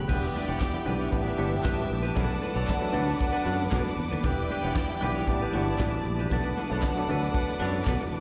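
Disco groove in E minor at 116 BPM, driving and sultry, cut from a longer piece and heard as a live gig through the venue's PA, with recital hall reverb and a top end that stops at 8.0 kHz. A damped 70s drum kit sits up front with a fat snare, tight kick and dark cymbals, adding crash and handclaps, while a growly, direct fingered electric bass anchors the low end from E1 to B2. A twangy, compressed clean electric guitar with lush chorus and slapback echo shares accompaniment duties with a reedy, lightly overdriven electric piano pulsing with fast tremolo through its built-in speakers. Two bowed string sections add polish: one holds pure, floating sustained chords high above, the other carries a second line with vibrato and a smooth top, both washed in plate reverb. Very quiet ringing congas and a crisp group handclap fill the background as the harmony cycles through Em7, A9sus4 and Bm7, and the electric piano closes with a fill from 7.6 seconds.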